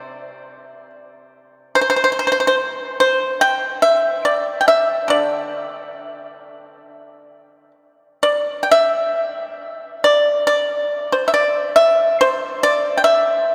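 A solo pipa, mellow and percussive under its fingerpicks and placed up front, opens this flowing, pastoral fragment of Chinese traditional music, drifting in free rubato at around 63-74 BPM across a range from low C3 to G5, moving into a new section at 8.7 seconds and running to 13.5 seconds, all heard within the long, cathedral-like reverb of a church or concert hall.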